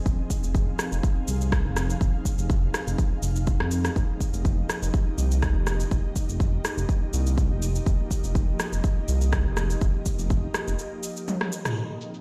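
An ethereal, detuned pad opens this driving, spiritual afro house excerpt, its slow-attack chords pumping against the sidechain and blurred by ensemble chorus and built-in reverb as they move from Fm7 to Ebadd9/F. A smooth, up-front sawtooth synth bass with vibrato pumps beneath it, while a punchy, tape-warm kick and a swung house kit of rim click, shaker and low-pass-filtered toms drive the groove. The whole mix sounds as if played through a big sound system in a bare stone room, and it drops into a break at 10.8 s, where a drum fill from 11.3 s and a band accent at 11.6 s close the section.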